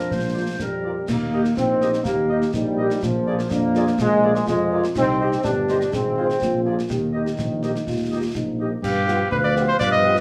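Proud and festive, this military-style march for wind band moves in a straight 2/4, a short cut from a longer piece with moderate studio reverb. A warm, close-miked cornet carries the melody up front over mellow trombone chords and a distant, roomy tuba bass, while a dark woodwind section and a mellow euphonium with vibrato share the second line. The euphonium drops out at 8.8 seconds as the harmony turns to G7, and a soft-edged French horn section sits in the background beside close, dry concert snare, bass drum and dark clash cymbals.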